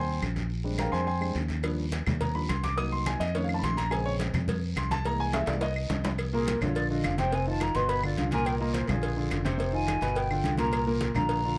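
A dark, intimate grand piano with audible action noise solos up front in this sultry, sophisticated Afro-Cuban jazz at 211 BPM, over a warm fingered electric bass, ringing congas, woody claves, a raspy guiro, and tight, high-tuned cowbell and bongos that enter at 1.6 seconds, until a drum fill at 5.3 seconds leads into a distant, hollow concert flute with vibrato and a crisp attack that solos from 6.2 seconds.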